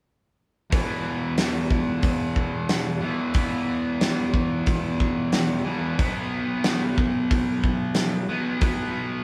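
Swaggering and brooding, this classic rock excerpt in a straight four sets a bright, picked, compressed distorted electric guitar riff up front, shifting from E5 to B5 at 6.0 s, over a big acoustic rock kit with punchy kick, medium-tuned snare, hi-hat and a rolled-off top, the whole band playing live in one room with moderate studio reverb.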